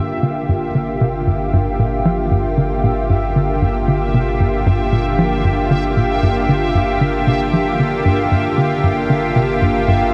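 A steady, straight 4/4 pulse at 115 BPM drives this hypnotic, expansive stretch of sequencer-driven space music in G dorian, cut from a longer piece and resting on a single Gm7 chord throughout its roughly 10 seconds. A tight, punchy sequencer bass riff, built from sawtooth and square waves with a fast-attack filter pluck that decays into a mellow tail, moves between G2 and F3 and is echoed by delay. Beneath it, a deep, round sine sub bass holds a sustained G1, while a lush, thick unison pad of detuned sawtooth and square waves spreads slow-attack chords from D3 to G4, bright and up front with chorus. High above, a bubbling texture on E5 steps through random resonant filter changes, its slow attack and long release softened by chorus and its own built-in reverb. The whole sound is bathed in a huge, wet ambient reverb with an 8.7-second decay, giving the music a vast, floating sense of space.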